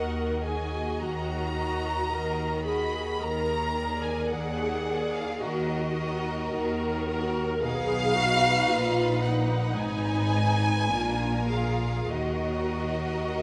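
Up-front, lush first violins carry an expressive, soft-attacked melody over a focused second-violin line, smooth and even violas, an intense, clear cello section and double basses, all bowed with vibrato, in this solemn, melancholic slow romantic movement for string orchestra in Eb minor at 54 BPM with a rubato feel, bathed in wet concert-hall reverb and cut from a longer piece.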